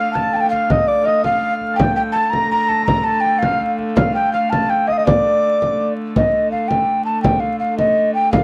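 This medieval dance in 6/8 moves at a driving 110 BPM in D phrygian, with a mysterious air as a breathy, hollow tenor recorder carries the melody up front, its crisp chiffed attacks and vibrato set over the earthy, nasal drone of a wheel-bowed hurdy-gurdy. A bright, distant shawm with folk-style vibrato and a ringing, thumb-plucked concert harp in the background trace second lines before falling away at 5.9 and 6.9 seconds, while a deep, large frame drum enters at 0.2 seconds and keeps the pulse close and present. Light reverb and a veil of vinyl crackle colour this fragment of a longer piece, which shifts into a new section near its close.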